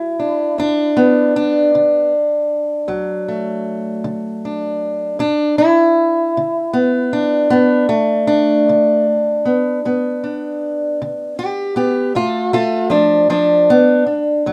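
Gritty and rollicking, this short excerpt of acoustic country blues moves at a slow 52 beats per minute in 12/8 metre with a straight feel, tuned slightly sharp to A4 = 443 Hz. A lone fingerpicked guitar carries everything, an old ladder-braced instrument whose dark, woody, boxy tone and old strings give it a worn, earthy character. It sits up front in the mix and ranges from D2 up to G4, playing alone for the full 14.5 seconds. The harmony rests on D before shifting to G at 5.2 seconds. A moderate studio reverb adds a modest sense of room around the guitar, and the clip is cut from a longer piece.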